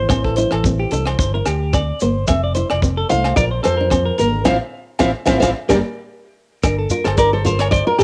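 A sunny, carefree highlife guitar band excerpt opens with a full-bodied, fingerpicked nylon-string guitar carrying the melody up front, its tone colored by cassette tape. Beneath it, a fingerpicked steel-string acoustic guitar with audible finger squeak supplies accompaniment, a bright, twangy clean electric guitar spins compressed arpeggios, and a round, dark fingered electric bass anchors the harmony. A breathy, veiled trombone in a bucket mute sits in the background as a whispered second line with gentle vibrato until 5.8 seconds. A tight funk kit with a high-tuned snare, rim click and hi-hat, also tinged by cassette, drives a lightly swung sixteenth-note groove alongside ringing agogo bells and a grainy, mellow shekere. The band hits an accent from 4.5 seconds, and at 6.6 seconds the nylon-string guitar takes a short solo over a Gm7 chord, all within a homespun cassette recording with light reverb and studio ambience.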